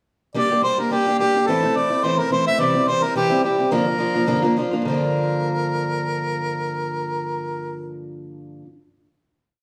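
A boxy parlour steel-string guitar opens this short, wild and dark Celtic reel, strumming open chord shapes in swung eighths. A mellow harmonica enters almost at once, carrying a motif-based melody in sentence-like phrases with vibrato and a classical bearing, both parts sitting up front. The duo plays live in one room bathed in a large, wet studio reverb, moving through a brief section over Gm, Am, C and Gm7 before settling on a final chord at 4.8 seconds.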